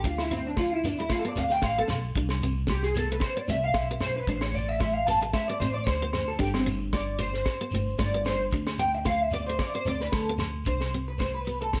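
Swung sixteenths at 113 BPM in 4/4 drive this joyful, danceable highlife guitar band excerpt, with a tight funk kit up front (high-tuned snare, tight kick) and a woody, thumpy pizzicato upright bass. Congas, a grainy shekere and ringing agogo bells sit in the background, while a picked steel-string acoustic guitar adds accompaniment with audible finger squeak. Up front, a bright, twangy, slightly broken-up electric guitar through a small old amp carries a solo of arpeggios through 10.7 seconds, colored by analog chorus and slapback echo, over chords moving from Dsus2 through Am and Gsus4 to C5 under a light reverb.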